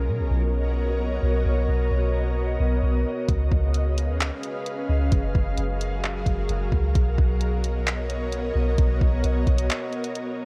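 A half-time 4/4 groove at 131 BPM drives this dreamy, floating cloud-rap excerpt, with a soft, round 808-style bass underpinning it from the start and a smooth electronic R&B kit of gentle kick, hi-hat and handclaps joining at 3.3 seconds. Above them, an ethereal pad of detuned sawtooth and triangle layers with a sub octave sustains slow-attack chords moving from Bmaj9 through C#7 and F#maj9, dressed in ensemble chorus, its own reverb and sidechain pumping. The whole recording carries the worn, warbling pitch drift of old cassette tape, and the bass drops away at 9.7 seconds for a brief break.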